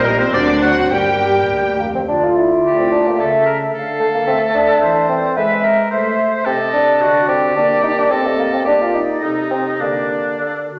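This stormy, dramatic fragment of a quick classical-period movement for symphony orchestra opens with full strings and winds together in D minor, moving in 2/4 at roughly 101-111 BPM with a rubato feel. Two violin sections play with vibrato, one clear and even on the melody, the other lush and very quiet on a second line. A rich viola section adds portamento, while a focused cello section sits in the background and a double bass section with soft attack rounds out the bass. The violins and violas drop out at 1.8 s and the low strings at 2.1 s, leaving the woodwinds and horns to carry the rest. An up-front, mellow bassoon anchors the accompaniment beneath sustained French horn chords, as an airy flute group with crisp attack, a close-miked oboe and a background clarinet add second lines above. The harmony turns toward G minor from 6.5 s, and a reverberant recital hall sound surrounds the ensemble.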